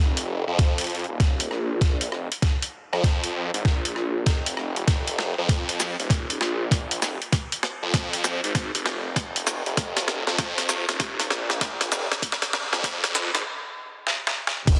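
A swirling, thick detuned saw bass with a phaser opens this funky, playful glitch hop excerpt, soon joined by a gritty, pitched-down sampler-style drum kit with a medium-tuned snare, hi-hat, rim click, shaker and crash, and a thumpy electronic kick from 0.6 s. The swung groove builds throughout under a filter sweep and drum fills, with the bass, kit and kick all sitting up front. A stop arrives at 13.4 s, all of it set in a moderate plate reverb and a dense, heavily limited master.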